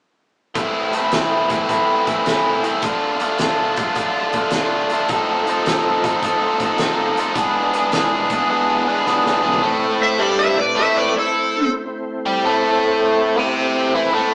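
Recorded live in a stone room with a small-speaker sound, this smoky, gritty blues rock and southern rock excerpt swings at 106 BPM in A minor: a biting, double-tracked overdriven guitar riff with spring reverb sits up front over an oversized, low-tuned acoustic drum kit with a fat snare and boomy kick, which plays through a fill at 9.1 seconds, while a thick tonewheel organ enters at 5.1 seconds with sustained chords through a slow rotary speaker, and at 10.0 seconds a bright slide guitar melody takes the front with a picked lead guitar line in the background.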